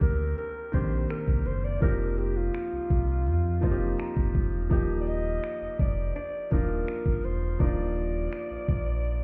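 Heard muffled as if through a wall and bathed in stone-room reverb, this dreamy, romantic contemporary R&B fragment moves at 83 BPM in Eb major over Cm9, F7sus4 and Ebmaj7 chords. A growling alto saxophone carries the melody with breathy, raspy vibrato and a smooth top, touched by delay, while a brilliant grand piano accompanies and adds a fill at 3.6 seconds. Underneath, an up-front sine sub bass with an octave sustains deep and full, and an electronic trap kit of finger snaps, bright hats and a knocking kick sits prominently in the mix.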